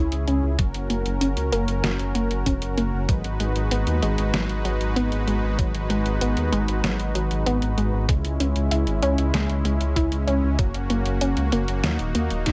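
A straight 4/4 pulse at 96 BPM drives this moody, nostalgic synthwave excerpt in G# minor, where a detuned 8-bit drum machine supplies hi-hat and a medium-tuned snare from 0.1 s and a thumpy electronic kick joins at 0.6 s, both re-recorded in a small room, beneath a deep, rumbling detuned saw bass sitting up front, smooth, evolving supersaw chords with sidechain pumping, and a warbling, dusty lo-fi pluck playing arpeggios through chorus and tape echo, set in light reverb as the harmony moves from C#m and F# to a long G#m7 before returning to C#m.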